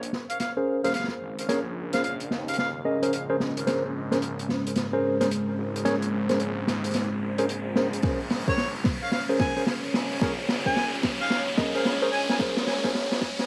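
This swaggering, funky glitch hop excerpt moves at 110 BPM in Bb minor with a swung 16th feel, holding one long build-up over a Bbm9 chord, with a drum fill and filter sweeps running throughout and an electronic riser entering at 2.9 s. An up-front, dark-toned jazz kit of hi-hat and snare drives it from the start, joined by a punchy, tape-warm electronic kick at 8.0 s. Beneath them, a swirling, detuned saw bass sits in the background under a deep, moody analog pad with 12-bit grit and sidechain pumping. Clean tine electric piano stabs pump through the mix with dub echo, and a distant harmonica with light vibrato carries the melody near the start and again from 8.5 s, the whole mix wet with spring reverb.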